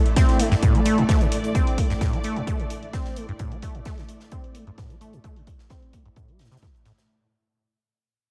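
A punchy, up-front electronic kick drives this trippy, gritty acid house piece at 130 BPM in 4/4 in A minor with a light 16th-note swing, alongside a tape-warm electronic hi-hat and a polished acoustic kit of hats and medium-tuned snare in the background, while a squelchy, resonant, saturated sawtooth acid bass riff with overdrive, tape echo and sidechain pumping sits prominently beneath lush, mellow string-machine chords with ensemble chorus, the mix bathed in a dreamy hall reverb and fading out over its 7.1 seconds.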